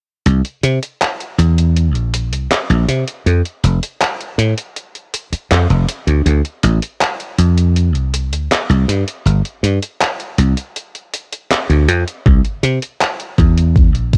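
A straight 4/4 pulse at 80 BPM drives this nostalgic, woozy vaporwave excerpt, with a detuned 8-bit drum machine ticking out handclaps and hi-hat through studio reverb and cassette-tape coloring from 0.3 seconds onward. Up front sits a dry thumbed slap bass, bright, growly, punchy and foam-muted, warmed by tube saturation as it roams from F1 to C3. A thumpy, sampler-style electronic kick joins at 12.3 seconds, its tape-softened weight adding heft to the homespun cassette ambience.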